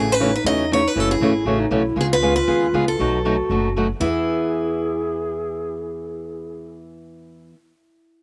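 From the first second, a bright, boxy parlour steel-string guitar picks a charming melody over a breathy, subtone clarinet second line with scooped notes and vibrato, while a second picked steel-string guitar with finger squeak and slapback echo picks out the accompaniment and a woody, thumpy pizzicato gut-string upright bass sits lower, in this playful jazz manouche fragment at 236 BPM in E major, swinging through A69, F#m7, C#7 and B7 to E with light reverb in an open-air setting.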